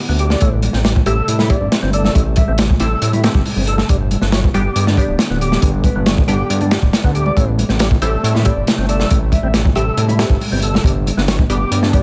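A crunchy, gritty breakbeat drum kit at 138 BPM drives this energetic, swaggering A minor cut, with a fat, detuned analog bass up front and bright, band-limited congas tucked very quietly beneath, all moving between Am7 and G. A lightly overdriven tonewheel organ riff with key click, chorus vibrato and slow rotary speaker sits among muted, phased dub chord stabs with filter sweeps and digital delay. Above them a breathy, flute-like synth lead with vibrato and a telephone-filtered edge floats in the background over a warbling, nostalgic, lo-fi pad, all within a studio reverb.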